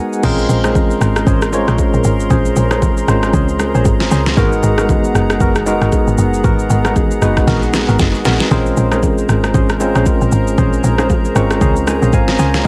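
This late-night, hypnotic amapiano piece at 116 BPM in Bb minor opens with a clean, up-front tine electric piano fill over a flute-like pad that pumps with chorus. A swung deep house kit (deep kick and snare, crash, rim click and shaker, roughened by vintage 12-bit sampler grit) enters at 0.1 seconds. At 0.2 seconds the groove drops in with a punchy, woody log drum bass, while a mellow organ-like stab with chorus and delay sits in the background and bright, very quiet congas and bongos fill in. The dry mix moves from Bbm9 to Abm9 and back, with a drum fill at 7.5 seconds and a second electric piano fill at 11.1 seconds.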